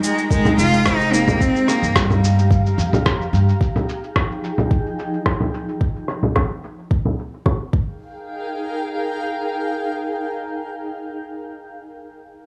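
A dry, gritty hardware recording with a light touch of studio reverb frames this hypnotic, organic downtempo excerpt, which moves with a gentle swing on the sixteenths. A bright, biting cello sings the melody up front, its close, airy bow and vibrato carried by tape echo until it drops out at 2.5 seconds. Beneath it, a cloudy granular pad holds sustained chords, its slow-attack, blurred body softened by built-in reverb, sidechain pumping and a filter sweep. A hollow, thumb-plucked kalimba adds brief arpeggios in the background through a low-pass filter and vintage 12-bit sampler grit, while a woody pizzicato upright bass thumps along under sidechain pumping until 3.5 seconds. An overdriven, soft electronic kick sits forward with a compressed, sampler-style kit of cabasa, congas and rim click, re-recorded in a small room, low-pass filtered and swept. After the kick stops at 7.9 seconds, the mellow pad carries on alone.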